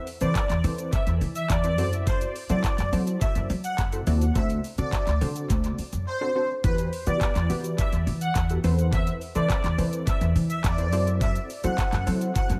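Dance-pop at 105 BPM in 4/4 with a straight, confident and energetic drive, cut from a longer piece and carried by a dry but echo-heavy mix. An up-front, woody pizzicato upright bass on gut strings and an electronic R&B kit with a knocking kick, metallic hats, handclaps, shaker and tape echo anchor the groove, while a punchy, nasal, detuned polysynth comp with a filter pluck and chorus pumps underneath over chords moving from Amadd9/E through F#m7b5 and D7 to Emadd9. An airy, mellow supersaw melody with a soft attack, pumping and tape echo floats on top, and the whole band drops into a brief silent gap from 6.1 to 6.6 seconds before picking back up.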